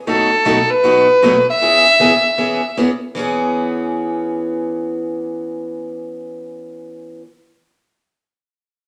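Country in E major at 156 BPM with a swinging, down-home feel, this short cut from a longer piece opens on a rich, focused fiddle with light vibrato and a smooth top carrying the melody up front until 2.7 seconds over a B7 that moves to E6, while a bright, boxy parlour steel-string acoustic guitar with fresh strings picks the accompaniment up front through 7.3 seconds, all set in a wet large-studio reverb.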